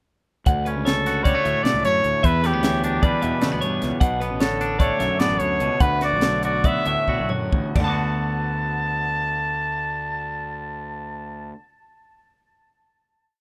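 Wistful and playful, this short, complete math rock and midwest emo piece moves in a straight 9/8 at a brisk 256-305 BPM counted in eighths, in D major, before slowing down from 4.4 to 7.8 seconds and settling onto a final chord that rings out to 12 seconds. A bright trumpet carries the melody from 0.9 seconds with hook-like motifs and light vibrato, sounding distant and roomy yet placed up front. A twangy electric guitar, scooped and played fingerstyle, supplies syncopated accompaniment, while a clean, compressed electric guitar picks a bright, twangy arpeggiated ostinato high above it. Underneath, a fingered electric bass with fuzz overdrive plays a dark, round, syncopated riff. A crisp fusion drum kit with a high-tuned snare and punchy kick drives the 9/8 groove and closes with a fill from 7.1 to 7.8 seconds before dropping out. The chords move from Dmaj7 to Em7 to D6, and the whole thing has the small-room feel of a rough home demo.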